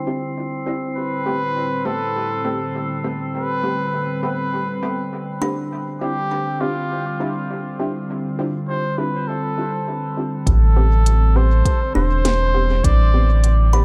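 Swung 16ths at 101 BPM in 4/4 carry this spacious, deep ambient dub excerpt in A minor, where a veiled cup-muted trumpet sings up front over a warbling, lo-fi tape-like pad, drifting glassy harmonics, mellow filtered chord stabs with dub echo and a woody, hollow kalimba in the background, until at 10.5 s a round sub bass, an overdriven deep kick and a kit with a woody snare and crisp filtered hats drop in beneath the echo-heavy, dry mix.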